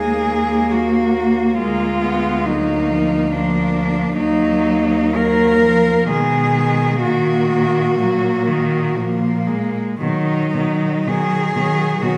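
In a flexible, rubato three-four, this melancholic, elegiac classical passage for cello ensemble is cut from a longer piece and unfolds over about 12 seconds. A bowed solo cello carries the melody up front, with a second cello's line set in the background and a third providing accompaniment, all three rich and smooth with vibrato; beneath them a clear, bowed bass cello anchors the harmony. The upper three players sound close, yet the wet recital-hall reverb places the ensemble further back in the room, lending the mournful minor-key progression a spacious, elegiac glow.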